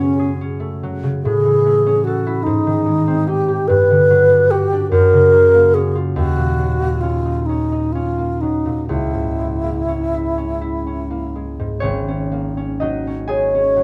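Close, detailed microphones and light reverb frame this hazy, wistful excerpt of impressionist classical music in a rubato 6/8 at 39-50 BPM, where a mellow wooden-headed alto flute sings the melody with a pure, tongued tone and vibrato over the ringing, fingerpicked concert harp, whose accompaniment drifts through lush seventh chords such as Amaj7, Gmaj7 and D#m7 before settling on G#9sus4 at 11.9 seconds.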